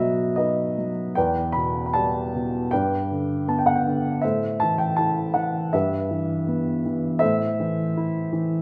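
A dark, woody upright piano, placed up front with a mellow tone and long sustain, carries this reflective classical solo across a range from E2 to B5 in a flexible, rubato 4/4. Its lyrical phrases move through a somber progression of B, Em7, G, Am and Em/G before settling back on Am, and a wet recital-hall reverb lends the sound a lingering spaciousness. The 8.6-second passage is cut from a longer piece.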